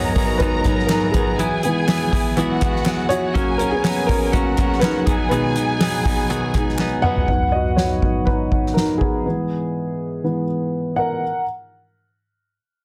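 Lightly swung 16ths at 122 BPM in 4/4 drive this uplifting, anthemic piano-driven pop passage, where a dark, woody, slightly detuned upright piano solos up front until 11.4 s. A clean, compressed, direct-recorded electric guitar riff, a lush, distant bowed violin section with vibrato and portamento, crisp handclaps in the background and a soft-mallet kit with a boomy kick and fat snare fill out the opening until a drum fill at 6.8 s. The piano then carries on over G#m7 and E before slowing down from 11.2 s, in a lightly reverberant room.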